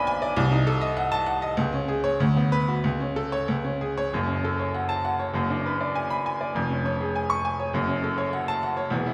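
Classical virtuoso piano study in F# minor, agitated and stormy, with a bright, worn baby grand playing solo across a range from E1 to C#6 at a rubato 90-103 BPM in 2/4, its short-sustain tone set up front yet heard from further back in a wet recital hall, as chords such as Cdim7 and Bm/D pass before a shift into a new section at 4.1 seconds that opens on F#m, moves through G#m7b5/F# and settles back on F#m in this short cut from a longer piece.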